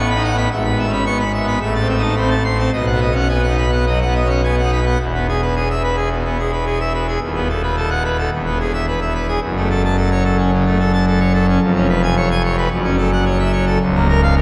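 Drenched in a long church reverb of 3.7 seconds, this majestic, jubilant classical organ toccata at 109 BPM in E major, tuned to A4 = 436 Hz, features a solo pipe organ on full organ with brilliant mixtures and romantic voicing, placed up front as it spans from a low D-flat 1 to a bright C-sharp 6, shifting into a new section at 5.0 seconds and moving through F-sharp minor harmonies before this cut from a longer piece ends at 14.4 seconds.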